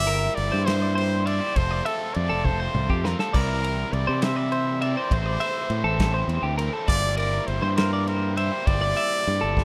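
A rough, dry home demo mix gives this short cut from a longer math rock and midwest emo piece a close, unpolished feel. At 68 BPM in a straight 6/8, the mood is intricate and wistful, moving through C9/G, F, C9 and Am before returning to C9/G. A bright, punchy trumpet sits up front and close-miked, singing a pop-style solo melody between A4 and E5, while a clean, compressed twelve-string electric guitar picks bright arpeggios in the same high register. Beneath them, a double-tracked overdriven electric guitar plays a riff, and a growling fingered bass, overdriven and prominent, anchors the low end. A loose indie drum kit, acoustic in a small room with a tight kick and a medium-tuned snare, comes in at 0.1 seconds and plays a fill from 2.4 to 3.3 seconds.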